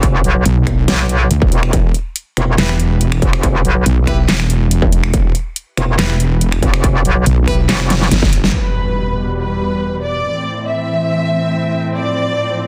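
Menacing and aggressive, this heavy wobble dubstep passage, cut from a longer piece, opens straight into a half-time drop. Two wobble basses drive it: a metallic, bright FM bass with chorus and overdrive, joined at 0.5 seconds by a heavy, detuned sawtooth wobble bass that sits saturated and up front. Beneath them a distorted, layered electronic kick pounds alongside a dubstep kit of finger snaps, handclaps, metallic filtered hats and a huge snare, while a bright brass ensemble adds tape-echoed stabs in the background. A drum fill and band accent close the drop, and at 8.5 seconds an electronic impact hits as the basses and drums fall away. A dark violin section then carries a woody, smooth-topped melody with vibrato over muted, veiled strings playing sustained chords, their gritty 12-bit texture pumping with sidechain as a filter sweeps across them. The sound is dense and heavily limited, set in light reverb.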